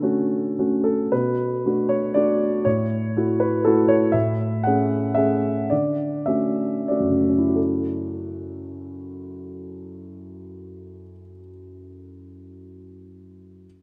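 Reflective and melancholic, this neoclassical minimalist piece in 3/4 unfolds with a rubato feel on a solo grand piano, its warm, natural tone sitting up front and spanning from F#2 to F#5. The playing moves through seventh chords such as Dmaj7, Bm7 and Amaj7, slowing down between 3.4 and 7.6 seconds before settling on F#m7. A lush, wet hall reverb surrounds the piano in a rough home demo mix, and the passage is cut from a longer piece.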